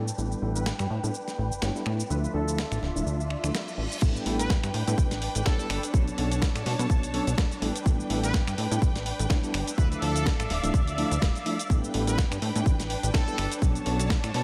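A bell-like tine electric piano with phaser, lush bowed strings and a plucky, up-front analog bass open this funky, sunny filtered disco house cut, all three pumping under a low-pass filter sweep. A gritty sampler-style soul kit of snare, hi-hat, finger snaps, cabasa and crash joins, while a brilliant trumpet section carries the melody in the background through tape echo. A reverse cymbal leads into the drop at 4.0 seconds, where a punchy, tape-warm electronic kick enters up front over swung grooves and sustained ninth chords in light reverb.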